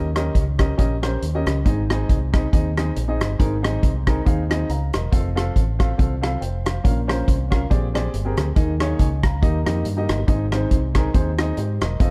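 Reverent and hopeful, this short uptempo gospel excerpt in Ab major moves at 139 BPM in 4/4 with a light swing on the eighths, running from Eb7 through Ab, F and Bbm to a Bb13 and Ebsus4 before resolving home to Ab. A woody upright piano with long sustain carries the accompaniment while a round, punchy fingered electric bass sits up front beneath it, and an acoustic country drum kit in a small room, playing hi-hat, punchy kick and rim click, joins at 0.2 seconds. Light reverb and a dark production give the whole a warm character.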